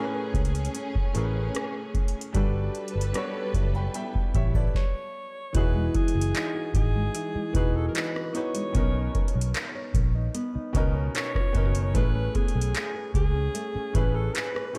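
This excerpt from a longer piece has a lightly reverberant small-room sound, with a booming analog drum machine and a dark, foam-muted vintage electric bass up front beneath clear, boxy grand piano and a thumb-plucked nylon-string guitar through analog delay. The piece is tender, romantic contemporary R&B at 75 BPM in E major, opening with lush, woody strings pumping over Amaj9 and Gmaj9 until a faint electronic swell and a stop at 4.7 seconds. A breathy, subtoned alto saxophone enters at 4.8 seconds to carry the melody with jazz-style vibrato and delay, and from 5.5 seconds a very quiet, detuned FM mallet pluck adds texture over Emaj9, Bmaj9 and Amaj9.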